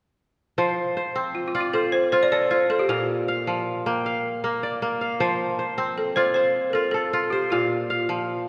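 Flowing and joyful, this excerpt of West African string and xylophone music moves at 104 BPM in 12/8 in F major, with a crisp, ringing, fingerpicked kora playing up-front arpeggios over F and Bb from 0.6 seconds, while a woody, buzzing balafon struck with hard rubber mallets adds a dark, smooth melody from 1.3 seconds, the pair set in a church's long, lush reverb.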